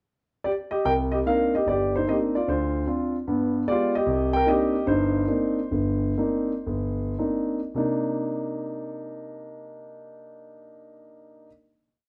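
Solo jazz piano with a late-night, moody air: a warm concert grand, heard up front with deep bass, enters at 0.4 seconds with a short pickup. It then moves through Cm9, Dm7 and G7b9 in a loose swing and rubato feel, with stride accompaniment in close voicings and a motif-based melody built in sentence-like phrases. The playing slows from 4.1 seconds before settling onto a final chord at 7.8 seconds, all carried in a detailed, close sound with moderate large-studio reverb.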